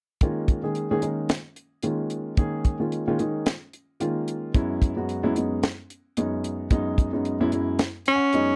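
Nocturnal and driving, this electric jazz fusion excerpt sits in a lightly swung 16th-note feel in 4/4. A dark baby grand piano carries the accompaniment from 0.2 seconds, its mellow, boxy tone marked by short sustain and audible action noise, moving from an Eb9sus4 chord to Gb9sus4 at 4.5 seconds. Alongside it, a tight funk drum kit of hi-hat, kick and snare sits up front, with a high-tuned snare and a tight kick. The piano adds a fill near the end, and at 8.1 seconds a tenor saxophone steps in on a single Db4, jazz-style with light vibrato, a scooped attack and a smooth top. The dry, close sound, with little reverb, recalls a 1970s studio and keeps every part up front and immediate.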